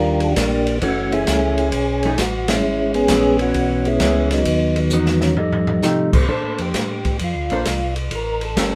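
A swinging 132 BPM groove in 4/4 drives this bluesy soul jazz organ trio excerpt, where a percussive tonewheel organ with third-harmonic percussion carries the melody through a slow rotary speaker, a clean, compressed hollow-body guitar comps darkly, a mellow tonewheel organ with key click and vibrato holds down the bass, and an up-front acoustic drum kit with boomy kick and dark cymbals marks a band accent at 2.4 seconds and a fill from 4.9 seconds before the organ takes a solo at 6.3 seconds over chords shifting from Ebmaj9 toward A7b9, all in light reverb.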